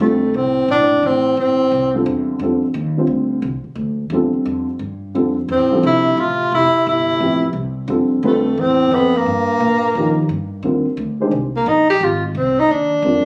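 A breathy tenor saxophone carries the melody up front, with subtone, vibrato and scooped notes that still sound distant and roomy. It falls silent briefly, returns at 5.5 seconds and opens into a solo at 10.6 seconds. In this open, hypnotic modal jazz excerpt at 175 BPM in swung 4/4, a mellow bass clarinet adds a second line in the background, while a dark, slightly detuned upright piano with audible action noise and a vintage, intimate tone accompanies throughout beside a woody, growly pizzicato upright bass, over chords moving from Fmaj9 and Dm through Eb7 to Abmaj7, captured on a phone with moderate large studio reverb and compression.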